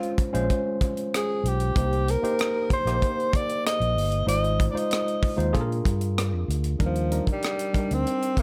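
Lush 1970s-style soul with a romantic mood, this short excerpt is cut from a longer piece and moves at an easy, straight-time pace. A breathy alto saxophone carries the melody as a pop-style solo, sung out with vibrato and placed close up front. Beneath it, a worn tine electric piano, slightly out of tune and lightly overdriven as if through its own built-in speakers, supplies the accompaniment. A tight funk drum kit of hi-hat, kick and rim click sounds acoustic and natural, while a fingered electric bass enters at 0.2 seconds with a round, amped tone and drops out at 8.0 seconds. The harmony glides through rich seventh and sixth chords, Dbmaj7, Cm7, Ab6 and Bb7, before settling on Ebmaj7 as a new section begins at 6.8 seconds, all wrapped in light reverb and a small-room ambience.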